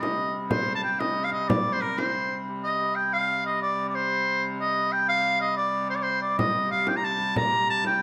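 In a straight 6/8 lilt at 123 BPM counted in dotted quarters, this brief cut from a longer medieval dance moves with an ancient, driving energy in C dorian, tuned to A4 = 442 Hz. A bright shawm carries the folk-style melody up front between Bb4 and Bb5. Its soft attack and roomy, distant tone are trailed by a slapback echo. Beneath it, a single warm hurdy-gurdy holds a wheel-bowed, keyed drone from C3 to G3, sounding nasal and reedy from a distance. A small frame drum struck with hard hands plays from the start until 2.2 seconds, drops out just before a new section begins at 2.5 seconds, and returns at 6.4 seconds with a bright, acoustic live-room sound. Close, detailed microphones capture the ensemble inside a moderate recital hall reverb.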